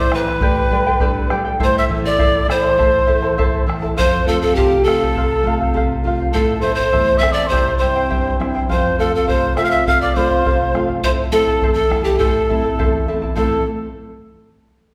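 A wet recital-hall reverb surrounds this wistful, melancholic Andean folk passage in A minor, set at 102 BPM in a straight 2/4 and cut from a longer piece. A reedy, up-front bamboo pan flute carries the melody with vibrato and audible chiff, while a quieter, breathy cane quena sings a higher second line. A shimmering double-strung charango and a full-bodied, fingerpicked nylon-string guitar with finger squeak fill in the accompaniment, and a deep, dark bombo enters at 0.1 s beneath chords moving through G/A, A minor, F and C.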